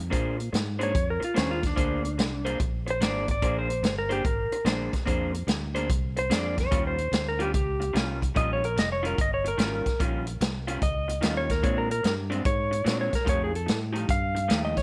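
Rollicking yet laid-back, this electric blues shuffle swings along at 146 BPM in Bb mixolydian, moving from Bb9 to Eb9 at 6.7 seconds and back before landing on F9. A round fingered bass starts at 0.0 seconds, joined by a natural-sounding vintage kit with a punchy kick up front and a dark, slightly broken-up guitar riff through a small old amp with a lo-fi, compressed edge. From 0.8 seconds a clean lap steel takes the lead with slide and volume swells, its dark tone set forward in the mix and doubled by a slapback echo, all in light studio reverb within a passage cut from a longer piece.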